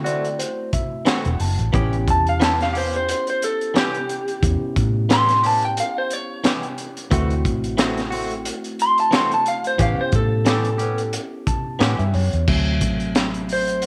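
A crunchy, saturated breakbeat kit with a punchy kick and high-tuned snare drives a laid-back, rollicking straight-eighth soul blues at 89 BPM with a light sixteenth swing, as a round, foam-muted vintage bass, a clean tine electric piano through a combo amp (adding fills at the start and again at 11.1 seconds) and twangy, compressed stabs from a direct-recorded guitar circle D9 and A9 chords, while from 2.1 seconds a lo-fi, slightly broken-up guitar through a small old amp carries the melody up front in a small room touched with light reverb.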